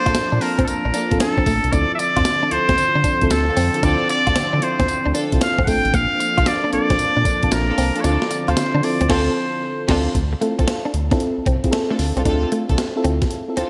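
Confident and slick, this swung new jack swing R&B excerpt in D minor moves at 114 BPM, with a nasal, breathy straight-muted trumpet carrying the melody up front until 9.9 s over a mellow FM electric piano, a detuned sweeping pad, a bright direct-recorded guitar riff, woody string stabs, a round analog bass and a gritty, compressed breakbeat kit with gated reverb whose kick drops out at 8.0 s before a brief break at 13.3 s, set in a bright 1980s-style digital production.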